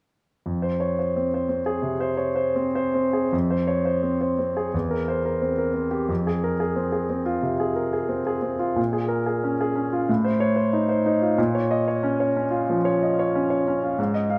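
A clear concert grand piano sits up front in a wet, large studio reverb with a 1.2-second decay, its deep bass and long sustain carrying a natural tone. This is a romantic character piece for solo piano in F minor, bittersweet and passionate in mood, moving in 4/4 with an elastic rubato feel between 76 and 95 BPM. The piano plays alone from 0.5 to 14.4 seconds, ranging from E2 up to F5. It opens on an F minor chord, then at 3.3 seconds a longer passage begins, passing through F5, C7/E and back to F minor. A Bbm7 and F7/A lead to a final B-flat minor, and the recording, cut from a longer piece, ends at that point.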